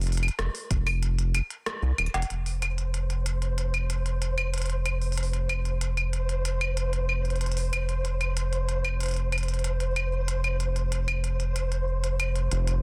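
A dense, heavily limited mix with light reverb frames this intricate, glitchy IDM excerpt at 94 BPM in 4/4, where an up-front, round analog bass with tube saturation and a crisp organic electronic drum kit of claves, cowbell, hi-hat and rim click run throughout, a soft electronic kick sounds briefly at 0.7 seconds, a drum fill at 2.0 seconds leads into an F5 chord, and from 2.6 seconds a grainy, flickering granular texture with its own reverb hovers high above.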